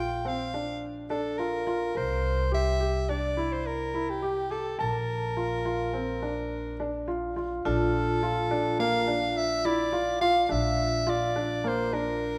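A close-miked soprano saxophone carries a hopeful, playful jazz-style melody up front, over soft felt-muted upright piano arpeggios and a woody pizzicato upright bass, in a contemporary chamber piece in Bb lydian moving at 105 BPM in 5/4 with a straight feel. At 7.7 seconds a bright, ringing vibraphone with medium hard mallets and medium motor vibrato adds a second line in the background. The harmony moves from Bb through C7 to Bbmaj7, all set in a moderate concert hall reverb.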